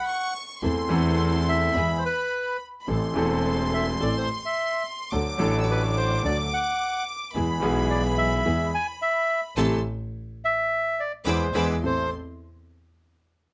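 Moderate studio reverb frames this melancholic, dramatic tango, cut from a longer piece and played with a rubato feel. A reedy, vintage bandoneon carries the melody up front while a clear, earthy bowed violin section with light vibrato traces a high second line, and at 0.6 seconds a brilliant grand piano with audible action noise, a very quiet gut-string chamber ensemble playing stabs, and a warm, smooth bowed double bass join over chords moving through A minor, D and E. The band accents together from 9.6 to 11.8 seconds before settling on A minor.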